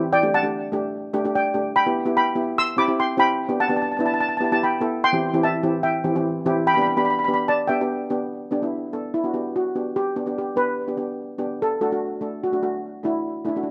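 Bouncy and carefree, this calypso excerpt at 146 BPM in G major, with a light swing on the sixteenths, sets a lead steel pan struck with soft rubber sticks, mellow, dark and smooth as it carries the melody from D4 to E6, over cello pans on medium rubber sticks that supply a shimmering, metallic accompaniment, both pans sitting up front in a dry open-air sound as the chords move through Dsus4, Em, C and G before a new section arrives at 8.3 s and settles on D at 11.6 s.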